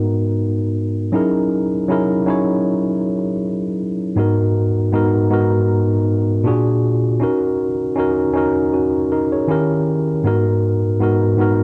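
A lone tine electric piano opens this late-night R&B fragment in G# minor, its worn, slightly out-of-tune tone sitting up front as if played through built-in speakers and run through cassette tape. At 79 BPM with a gentle sixteenth-note swing, it moves from G#m9 through F#13, A#7b13 and D#m7 to a D#7b9 before settling back on G#m9 at 10.3 seconds, spanning G#2 to C#5. The home cassette recording and digital ambience give this short, longing passage an intimate, lived-in feel.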